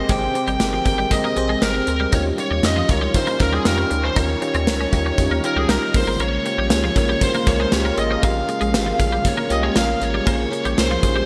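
A dark, overdriven lead guitar leads this romantic, glossy 1980s-style pop excerpt, carrying the melody up front with a delay trailing its picked notes. Beneath it, an FM electric piano layered with a soft pad supplies lush, dreamy accompaniment with chorus, while a sawtooth pad holds nasal, resonant sustained chords in the background. A twelve-string electric guitar plays a bright, twangy riff through ensemble chorus and delay, and a round analog bass anchors the low end with a deep, dark tone. The gated drum kit enters at 0.1 s at a steady 118 BPM in straight 4/4, its punchy kick, medium-tuned snare and hi-hat sitting up front in a stone-room sound with gated reverb. Set in Eb mixolydian, the harmony moves from Abmaj9 to Eb9 and then Bbm7, all wrapped in a moderate plate reverb and bright digital production.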